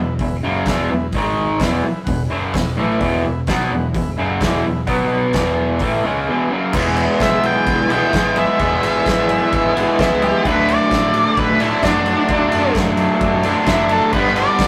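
A rowdy, swaggering garage rock excerpt in E mixolydian at 129 BPM opens on a bright, up-front, double-tracked guitar riff with overdrive, alongside a growly picked bass in the background and a very quiet, reedy combo organ holding sustained chords, before an oversized low-tuned drum kit with a punchy kick and medium-tuned snare comes in at 0.2 seconds. At 7.2 seconds an octave-fuzz lead guitar adds a dark, distorted melody, and later the chords move from E to D and then G. The rough rehearsal-room sound has tube saturation and a wet studio reverb, and the drums sound gritty and pumping in a big room.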